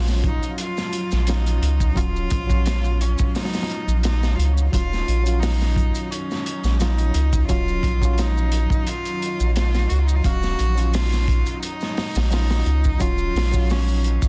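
This melancholic, dark trip hop passage, cut from a longer piece, opens with a reedy electric piano accompaniment and a string machine cello patch holding sustained chords in the background, over a round, deep analog bass sitting up front. The string machine sounds full and vintage, its mellow sawtooth tone thickened by phaser and ensemble chorus. At 0.1 seconds a crunchy breakbeat kit enters with a punchy kick, a medium-tuned snare and hi-hat, saturated and gritty with a rolled-off top, joined by quiet maracas and group handclaps further back. From 0.3 seconds a single bowed cello carries the melody close to the ear, expressive with vibrato and portamento, and trailed by tape echo. The whole passage rests on one harmony, with little reverb and a dense, heavily limited modern master.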